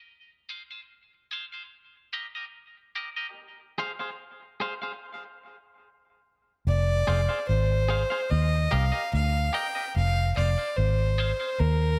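A straight 4/4 dub reggae groove, spacious and heavy, opens as a break with twangy, clean, picked electric guitar playing alone in a small room with light reverb, high-passed and trailed by tape echo, before the music stops at 5.0 seconds. At 6.7 seconds a dark, round, foam-muted electric bass enters up front, punchy and amped, while a single bowed fiddle, biting, nasal and earthy, carries the melody through its own tape echo. Meanwhile the guitar takes on a filter sweep until it drops out at 11.5 seconds.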